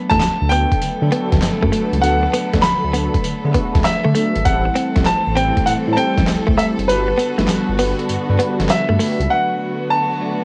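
R&B new jack swing with a punchy, bouncy feel, cut from a longer piece, in which a clear, up-front concert grand piano carries the melody over a very quiet bell-like tine electric piano, lush bowed strings holding chords, a picked, clean guitar riff with subtle chorus, dark synth brass stabs in the background, a smooth sawtooth synth bass, and a gritty, overdriven sampler-style drum kit with handclaps, tambourine and a thumpy kick that drops out from 6.9 to 9.3 seconds, the whole piece carrying the light reverb and muffled top of a home cassette recording.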